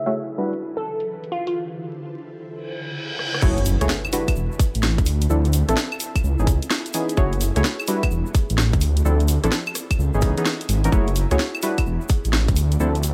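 UK two-step garage with a swung, soulful late-night mood, where an ethereal pad with phaser and sidechain pumping sits behind a brief glassy wavetable pluck melody, mellow, warbling chord stabs with dub echo and a garage kit of cracking snare, warm hats, claves, rim clicks and crash, until a reverse cymbal and impact usher in the drop at 3.4 seconds, where a dark, rumbling detuned saw bass, a tight up-front electronic kick and a grainy egg shaker join under a haze of vinyl crackle.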